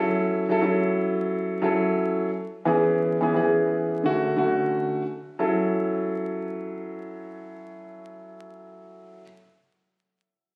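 Gritty and reflective, this hip hop fragment cut from a longer piece places a dark, mellow grand piano up front, its intimate, vintage tone carrying audible action noise through high- and low-pass filtering as it plays swung accompaniment over F#m7, E6 and Dmaj7 before returning to F#m7 at 5.4 seconds, the whole framed by light reverb, vinyl crackle and the character of a phone recording in the room.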